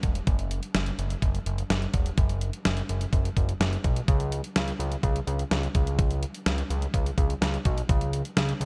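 An excerpt of driving, nocturnal synth-pop at 126 BPM in straight 4/4 opens with a fat analog bass of detuned sawtooth and square waves, thick and sustained with a fast attack, a filter sweep and a moving notch, sitting up front beside a detuned 8-bit digital drum machine whose thumpy kick, medium-tuned snare and hi-hat sound tape-warm and sampler-style, re-recorded in a small room, all under light reverb for the full 8.7 seconds.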